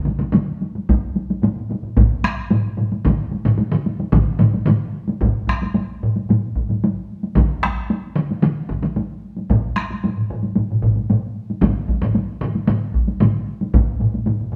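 Powerful and ceremonial, this short cut from a longer Japanese traditional piece features a taiko drum ensemble playing in straight 4/4 at 112 BPM, with the pulse speeding up throughout its roughly 14.6 seconds. Four taiko parts make up the whole texture, all acoustic and placed up front: one struck with heavy sticks and heard close and dry, one with hard sticks in the same close, dry placement, and two with heavy sticks carrying a small-room sound. The first two groups begin almost at once, while the others join at 0.9 and 1.4 seconds, building a dense, thunderous wall of drums. The performance shifts into a new section at 5.2 seconds, where the accelerating drive grows more urgent. The ensemble plays live together in one large studio, and its reverb lends the thunder a booming, cavernous bloom.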